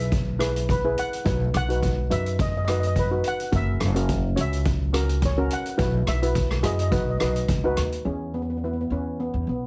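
A heavily compressed, radio-like sound with light reverb frames this festive, sunny calypso excerpt in E major at 106 BPM, with a gentle swing on the sixteenths. A metallic, shimmering double-second steel pan carries the melody over dark, smooth cello pans, both played with medium rubber sticks, while a woody, growly pizzicato upright bass on steel strings sits up front. A small-room street-band kit with a boomy kick, hi-hat and rim click plays until 8.0 seconds, as the chords move from E through B and F#7 to Bsus4 and back to B before landing on E at 8.1 seconds for a brief new section.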